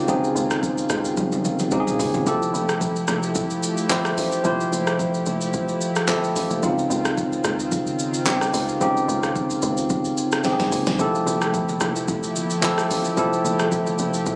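Recorded on a phone in the room, the sound carries club reverb, compression and lossy digital artefacts. This is a relaxed amapiano excerpt in F major at 110 BPM, with a gentle 16th-note swing, cut from a longer piece. Up front, a clean tine electric piano through a combo amp plays chords that move between Dbmaj9 and Fmaj9. Behind it, a smooth sawtooth analog pad with a soft attack holds long chords, colored by chorus and sidechain pumping. The layered electronic deep house kit has a deep kick, fat snare, handclaps, hi-hat, rim click, shaker and toms, sounding tape-warm and re-recorded in a small room, with fills at 1.2 and 10.4 seconds. A hollow, bouncy FM log drum bass with a noise layer and fast, decaying attack sits mellow in the background, and low-tuned acoustic congas ring very quietly from 11.3 seconds.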